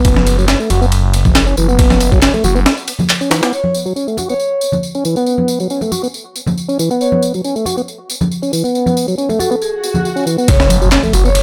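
A playful, energetic breakbeat excerpt driven by a fat, lightly overdriven tonewheel organ riff with key click and slow rotary swirl, a thick, swirling phased saw bass, gritty sampler-style drums with a thumpy kick and high-tuned snare, tape-warm electronic tambourine and handclaps, and ringing low-tuned congas, where the bass drops out at 2.7 seconds and the drums follow at 3.5 seconds as a metallic vibraphone melody with an old record sound enters, before an electronic swell and impact bring the full groove back at 10.5 seconds.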